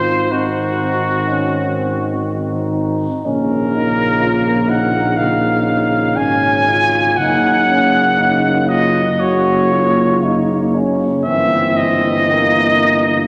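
A warm cornet with light vibrato carries the lyrical melody up front, singing between Gb4 and Ab5 across this short 13.3-second cut from a longer hymn-like brass band piece. Beneath it, a dark, tight French horn section holds a second line in the background, while a clear euphonium and a dark trombone with light vibrato supply the accompaniment, the trombone sitting further back. A dark tuba anchors the bass, low between Gb1 and Bb1. The mood is serene and the tempo is a slow, rubato 57-63 BPM in 4/4, with the harmony moving from Ab7 through Bbm and Gb to Gm6. A wet church reverb with a 3.1-second decay surrounds the ensemble, lending the classical-style playing a spacious, devotional glow.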